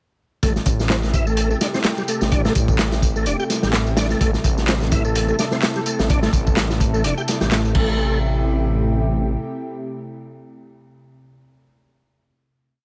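A swung, looped breakbeat with edits drives this gritty, raw breaks piece, its crunchy, saturated kit up front with a tight kick, dark cymbals and a rolled-off top, topped by an overdriven electronic layer of tambourine and handclaps. Beneath it a thick, detuned saw bass rumbles out a menacing dub-style line, while a tonewheel organ repeats a 32-step riff through fast rotary speaker, chorus vibrato, overdrive and digital delay. A lush unison pad with vintage sampler grit and sidechain pumping holds an Am7 chord in a small room, sustaining after the drums drop out near 7.9 seconds, outlasting the organ and bass, and ringing until 11.2 seconds.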